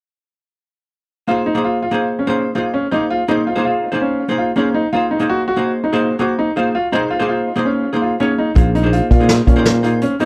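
Progressive instrumental band music in an uneven 5/4 meter, this tense, driving excerpt moves at 165 BPM with a straight feel in Bb minor, tuned to A4 = 442 Hz. From 1.3 seconds a dark, clean hollow-body jazz guitar plays picked, double-tracked accompaniment while a clear concert grand piano weaves smooth, short-sustained arpeggios through a tape echo. The harmony rests on Bbm9, shifts to Ab9 over a Bb bass at 4.9 seconds, then returns to Bbm9. At 8.6 seconds a growly, punchy fretless electric bass and a vintage brush drum kit arrive together, the kit bringing a medium-tuned snare, punchy kick and hi-hat with a roomy, rolled-off top. Light reverb surrounds the parts, and the drums sit loudest in a mix where each instrument stays up front.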